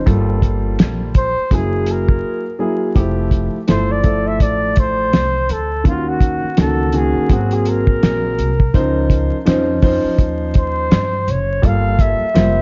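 Jazz-hop with a warm, smooth mood, this short cut from a longer piece moves at 83 BPM in 4/4 with a swung sixteenth-note feel. A cloth-damped, thuddy drum kit sits up front with a fat snare, tight kick and hi-hat, dry and dark with a rolled-off top, while a woody, thumpy pizzicato upright bass holds the low end. A dark grand piano plays mellow, intimate accompaniment with audible action noise and a vintage character, moving through rich chords such as Gm9, Fmaj9 and Dbmaj9. A breathy flugelhorn enters at 1.2 seconds, soft-attacked and whispered with light vibrato, sounding distant and roomy through an analog delay. After a brief break at 2.2 seconds, it takes a jazz-style solo from 3.0 seconds to the end. The production is dark with vinyl crackle, light reverb and small-room ambience, keeping the top end subdued.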